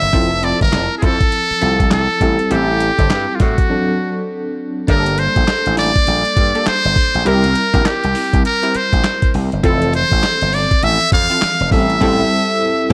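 New jack swing R&B at 101 BPM in G dorian, punchy and slick with a swung 16th-note feel, where a buzzy, breathy metal-muted trumpet with delay carries the jazz-style melody up front over a mellow FM electric piano with tremolo, a gritty overdriven slap bass, a dusty, compressed sampler-style drum kit with thumpy kick, handclaps and crash, and a sawtooth polysynth comp adding chorused, filter-plucked stabs in the background, all in light digital reverb, with a break at 3.7 seconds and a band accent at 12.0 seconds closing this cut from a longer piece.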